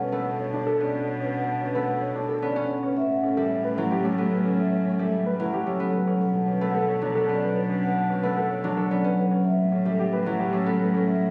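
This hypnotic, radiant passage of minimalist classical pattern music, cut from a longer piece, opens with five instruments sounding together in triple metre. Up front, a fingerpicked concert harp rings out the accompaniment, while a baby grand piano spins arpeggios with an intimate, natural tone and audible action noise until 11.1 seconds. A vibraphone played with soft mallets carries the melody, its metallic yet mellow sound shimmering with fast motor vibrato. Further back, a bright clarinet traces a second line, and a single cello supplies a close, bowed bass played sul tasto, with an airy bow, soft attack and light vibrato. The harmony alternates between Bm7 and A9, and the sound is set in a moderate recital hall reverb with added studio reverb, captured on a phone in the room and compressed.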